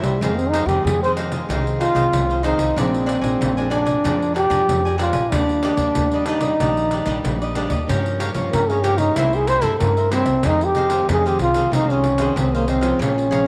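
A straight 4/4 samba and choro groove at 94 BPM carries this yearning, nostalgic passage in F minor, cut from a longer piece, as a breathy, whispered trombone plays an intimate, mellow jazz-style solo up front with light vibrato and a soft attack until 10.4 seconds, over crisp picked cavaquinho, a bright fingerpicked classical nylon-string guitar in the background, woody pizzicato upright bass and a jingly, distant pandeiro played with hard hands, inside a moderate plate reverb.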